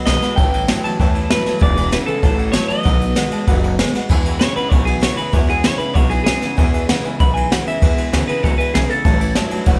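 Rowdy and retro, this dry rockabilly fragment rides on up-front brushed drums with dark cymbals, a high-tuned snare and a boomy kick, a thumpy gut-string upright bass, and a twangy, slightly broken-up electric guitar riff with analog chorus, while a jumbo steel-string acoustic with finger squeak and an intimate, woody upright piano sit in the background beneath a bright, lo-fi lead guitar whose delayed melody turns into a clean solo from 4.1 seconds.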